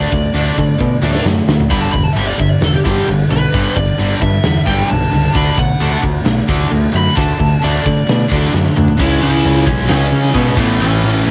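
A dark, overdriven lead guitar solo with cassette tape grit and tape echo opens this anthemic hard rock excerpt at 132 BPM, riding over two bright, picked rhythm guitars playing riffs, one of them tucked in the background, and an up-front, growling bass with a punchy, overdriven edge. A huge arena drum kit with a punchy kick and medium-tuned snare in a pumping hall room adds fills around 0.8 and 8.5 seconds, as power chords move from D5 to G5 and back. At 9.0 seconds the solo gives way to a new section shifting through C#m to A, all captured with little reverb on a home cassette recording.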